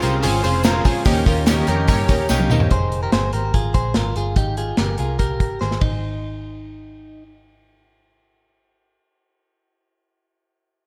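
A straight 4/4 beat from an up-front acoustic drum kit drives this breezy, youthful slice of jangly indie pop, its dark, smooth sound built on a tight kick, a medium-tuned snare, hi-hat, ride cymbal and toms, with short drum fills marking the section changes. Underneath, a foam-muted vintage electric bass plays round, amped low notes throughout, while a tambourine jingles in the background during the opening seconds. A bright, compressed clean electric guitar, recorded direct, spins arpeggios coloured by warbly pitch drift, digital delay and slapback echo, carrying on until 7.2 seconds. Also at the start, a shimmering, octave-doubled twelve-string acoustic guitar with fresh strings and a boxy parlour tone joins glossy, chorused retro synth keys, whose pulse-wave and sawtooth tones decay after a fast attack and filter sweep; both parts carry slapback echo, and the synth keys add a short fill. 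Beneath them, a very quiet, swirling phased pad of detuned sawtooths holds sustained chords over the opening Dbmaj7 and Eb7, while a lush hall reverb gives the mix a big arena sound.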